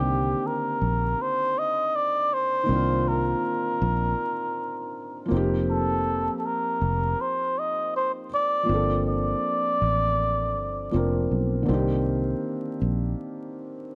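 Lightly swung sixteenths in 4/4 carry this melancholic, nostalgic lo-fi hip hop fragment, cut from a longer piece, over a vinyl crackle and a moderate studio room, moving from Cm7 through F7sus4 and Gm11 back to Cm7. A cup-muted trumpet sings the breathy, veiled jazz melody with light vibrato and plate reverb until 11.3 seconds, while a felt-muted upright piano comps in soft, intimate tones with audible action noise and its own plate reverb, sounding on alone until 13.9 seconds. Underneath, a fingered electric bass sits up front with a round, foam-muted, amped tone and stops at 13.1 seconds.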